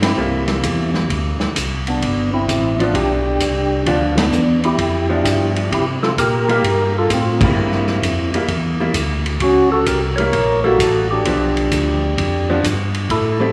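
A band accent opens this greasy, bluesy soul jazz organ trio fragment as a soft, flute-like tonewheel organ carries the melody up front, with clicky third-harmonic percussion and a slow rotary speaker, over a full, lightly overdriven organ bass line with chorus vibrato. A swung soul drum kit with dark cymbals, a tight kick and a rolled-off top plays hi-hat, ride and snare, while a dark, clean hollow-body electric guitar enters at 0.2 seconds with a compressed, picked accompaniment through a bluesy progression that passes through a diminished chord. Further band accents land at 4.1 and 7.3 seconds, and the whole trio rings in a wet concert-hall reverb.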